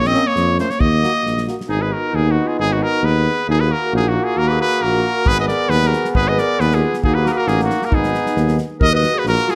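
A moderate recital-hall reverb lends a spacious sheen to this short cut from a longer Balkan brass band piece, set in Ab minor at 135 BPM in a swung 2/4 with a restless, bittersweet mood. A bright, up-front trumpet with light vibrato carries the melody over a mellow tuba bass, while a warm clarinet second line, a soft-attack euphonium and a distant trombone sit in the background, the horns all played in classical style. An acoustic drum kit with tight kick, medium-tuned snare and a rolled-off top plays from the start, drops out at 1.7 seconds and returns at 5.3 seconds.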